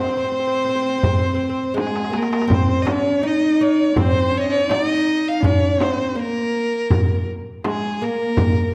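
A dark, reverberant recital-hall sound frames this hypnotic, soulful Arabic maqam ensemble excerpt at 82 BPM in a straight 4/4. A clear, focused solo violin carries the melody up front with vibrato. Beneath it, a rich, reedy gut-string cello and a woody, plectrum-plucked fretless oud set back in the mix play a second line, while a crisp, deep metal-shell darbuka enters at 0.3 seconds and a soft-handed, dry frame drum joins at 1.0 seconds, with a drum fill at 1.8 seconds leading into the second section.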